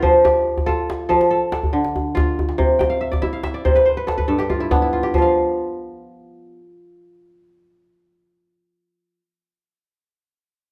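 West African traditional music in a joyful, flowing 12/8, taken from a longer piece, with a band playing live together in a moderately reverberant large studio. An up-front kora spins ringing, crisp fingerpicked arpeggios over F, Dm, C and G, adding a fill from 2.8 seconds, while a close, tight djembe struck with soft hands cracks alongside it. The djembe stops at 5.3 seconds, leaving the kora alone until 9.2 seconds.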